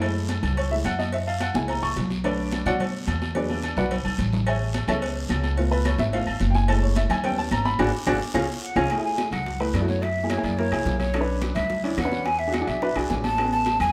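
Recorded live in one room with a large studio reverb, this sultry, fiery Afro-Cuban jazz excerpt in F# minor races at 216 BPM as an intimate, up-front baby grand piano with audible action noise takes a solo over a thumpy gut-string upright bass, soft-handed congas, round low-tuned cowbell and bongos, ringing agogo bells and timbales, and a raspy guiro; very quiet woody claves join at 4.5 seconds, drum fills and a band accent mark the turn, and a distant, breathy metal flute enters at 8.6 seconds with a hollow straight tone.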